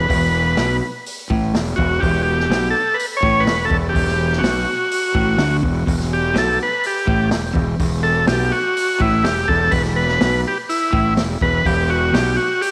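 A buzzy, up-front transistor combo organ solos across the whole 12.7-second excerpt, its clean tone carrying light vibrato and tape echo in the E4 to C#5 range. Beneath it, in this hypnotic, trippy psychedelic rock passage at 124 BPM in E minor, a slightly broken-up electric guitar through a small old amp picks a low compressed riff with harmonic tremolo, while a round, punchy fuzz bass adds overdriven grit. A vintage drum kit with a medium-tuned snare and rolled-off top keeps a straight 4/4 on hi-hat, kick and snare, all sitting in moderate spring reverb and a small room over a steady Em chord.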